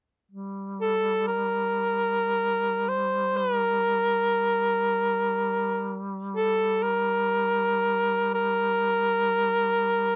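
The recording is dry and close, with the intimate feel of a 1970s studio and little reverb around the instruments. This short excerpt of a Caucasian folk lament carries a solemn, mournful mood. A duduk enters at 0.3 s and holds a low drone on G3, its warm tone shaded with vibrato and set back at a distance in a roomy space, played in a folk style. At 0.8 s a cor anglais takes up the melody between A4 and C5, sitting up front with a soft attack, light vibrato and a smooth top that reflects its classical style. Both parts continue together until the passage is cut off at 10.2 s.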